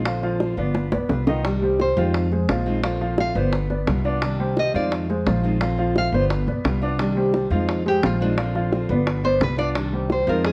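Latin Cuban son and guajira in C minor at 173 BPM, this danceable, warm excerpt opens with a fingerpicked steel-string acoustic guitar, a woody, thumpy pizzicato upright bass, a baby grand piano playing long-sustained arpeggios, and round, low-tuned bongos played with soft hands, all cycling through Bbadd9, G7, Cmadd9 and Fm7. After a fill ending at 1.4 s, a dark, full-bodied nylon-string guitar enters up front at 1.8 s for a classical-style fingerpicked solo with audible finger squeak. Light reverb and a worn cassette-tape warble with pitch drift give the recording an aged, wavering character.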